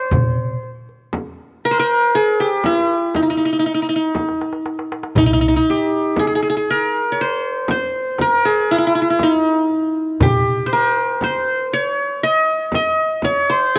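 Passionate and stately, this fragment of an Arabic maqam ensemble piece moves in 10/8 at 119 BPM (eighths) in C maqam huzam, tuned to A4 = 436 Hz. Up front, a bright-edged qanun with triple strings carries the melody under fingerpicks, its tone colored by cassette tape, while a woody, pizzicato upright bass with steel strings holds the low end until 10.6 seconds. A clay-shell darbuka sits in the background beside a close, dry frame drum, with a drum fill from 4.2 to 5.2 seconds, all captured as a home cassette recording with light reverb and small-room ambience.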